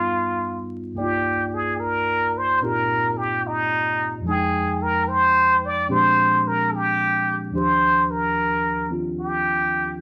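Tender and late-night in mood, this short jazz excerpt moves at a slow 73 BPM in 4/4 with a swung eighth-note feel. A trumpet with a plunger mute carries the melody up front, its brilliant, punchy tone shaped by a wah-wah colour and vibrato as it plays solo in a forceful jazz style between Eb4 and D5. Beneath it, a mellow tine electric piano supplies clean, direct accompaniment across a broad span from C2 to G5, sitting well below the horn in level. The harmony drifts from G7b13 into Cm11, then through Fm9 and Bb13 before settling on Ebmaj9 at 7.5 seconds. A wet studio reverb and a layer of vinyl crackle give the recording a hazy, intimate glow.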